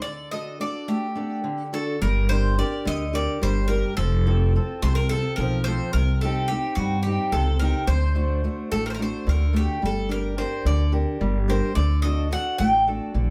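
A bright, metallic Greek bouzouki with doubled strings carries the melody over a fingerpicked, up-front steel-string acoustic guitar in a brief opening break, before a woody, thumpy pizzicato upright bass joins at 2.0 seconds, and this moody, brooding Greek folk fragment in a straight 7/8 gathers speed throughout, set back in a moderately reverberant studio room.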